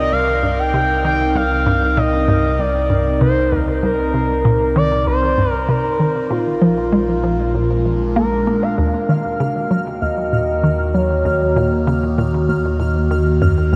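Cosmic and hypnotic, this sequencer-driven space music fragment unfolds in a steady, straight 4/4, bathed in a huge, wet ambient reverb. A smooth, expressive portamento lead carries the melody with soft-attack glides and vibrato over an evolving, morphing wavetable pad that sits bright and up front. Beneath them a round, deep analog bass anchors the harmony while a hollow, bouncy square pluck plays its riff, and at 8.8 seconds a faint pulsing gated texture enters high above as the chords shift from Cm7 and Bb7 to Ebmadd9.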